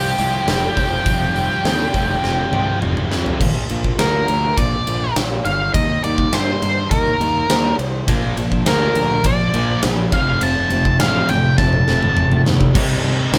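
A straight 4/4 pulse at 103 BPM drives this brooding, dark slice of quiet-loud alternative rock, cut from a longer piece. Up front, a dark octave-fuzz lead guitar carries the melody between G4 and A5, while a clean, hollow-bodied semi-hollow electric guitar picks arpeggios further back. A thick, bright fuzz guitar plays a picked riff over the opening Fsus2, drops out at 3.4 seconds as the harmony moves to Bb and Eb, and returns at 8.1 seconds. Underneath, a round, overdriven picked bass holds the low end, and a huge arena drum kit with a punchy kick and medium-tuned snare sits prominently in a big room, rolling through fills at 2.2 and 11.6 seconds. In the final moments a compressed distorted guitar slips in behind the band on a Cm chord, all of it captured as a group playing live in one room with moderate reverb.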